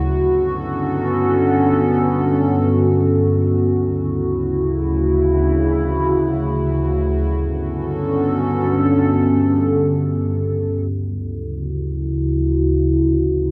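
A dark analog pad, detuned and built from square, sawtooth and triangle waves with a sub octave, plays alone and up front for the full 13.5 seconds, its slow attack, long release and sustained tones colored by chorus and phaser. This floating, dreamy hip hop fragment in free time and D major drifts between Gmaj9#11 and Dmaj9, with the low end reaching down to D2. The production is dark and low-pass filtered under light reverb, and a filter sweep from 10.9 seconds reshapes the pad's moody, deep tone to the end.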